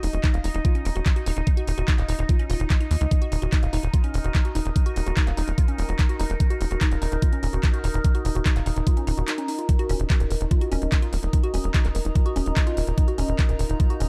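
Psychedelic trance with an alien, hypnotic drive, this cut opens on a knocking, overdriven kick up front and a tight sawtooth sequencer bass with a filter pluck, while a drum kit adds bright hi-hats and handclaps and a brief break arrives at 9.3 seconds. Above them, a woody, wave-folded pluck riff carries chorus, dub echo and sidechain pumping over a resonant drone whose overtones sweep through phaser and chorus. A warbly, lo-fi tape-like pad drifts in at 10.4 seconds in the background, all within a dark, dry production.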